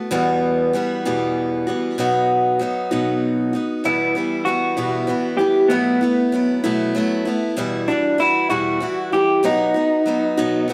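A picked steel-string acoustic guitar opens this haunting, melancholic acoustic folk excerpt, its bright, fresh-stringed tone up front with an occasional finger squeak as it outlines Emadd9 and B. The piece moves at a slow 64 BPM in a straight 6/8 feel, set in E minor. At 3.9 seconds an electric guitar through a small old amp enters to carry the melody, its dark, slightly broken-up sound shimmering with harmonic tremolo and sitting up front beside the accompaniment. Beneath it, the acoustic continues through Em, B7sus4, Emadd9 and B. A moderate small-room reverb gives both guitars a close, intimate space until the cut at 10.7 seconds.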